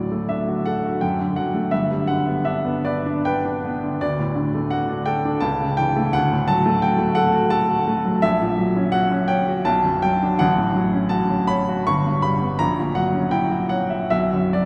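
Bittersweet and brooding, this short passage cut from a longer piece is a romantic character piece for solo piano in the classical tradition, set in D major and 3/4 time. The tempo drifts between 66 and 89 BPM with a free, rubato feel. A baby grand piano carries everything alone from 0.0 to 14.7 seconds, ranging from G1 up to C#6, its tone warm, natural and up front with a short sustain. A cathedral reverb with a long 5.3-second decay surrounds it in a deep, wet space. The harmony moves from an opening on D through G and A7/C#, then around 8.2 seconds passes through F#7/A# and Bm toward a final Bm at 14.1 seconds.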